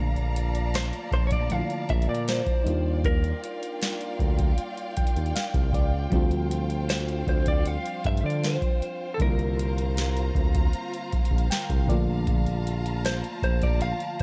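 A late-night, sensual mood hangs over this short contemporary R&B excerpt in a steady, straight 4/4. A booming analog drum machine sits up front with a deep kick, crisp snare and metallic hats, while a smooth synth bass anchors the low end just as prominently. A warbling, vintage FM electric piano supplies mellow accompaniment and slips in brief fills at 4.6 and 11.1 seconds, beneath a distant, bowed string section holding lush sustained chords with vibrato and portamento. From 0.8 seconds a clean, direct-recorded electric guitar carries the melody, its compressed, picked tone dressed in chorus and delay. The harmony drifts through rich seventh and ninth chords such as Bbmaj7, Ebmaj9 and C9sus4, and the overall sound is dry and close.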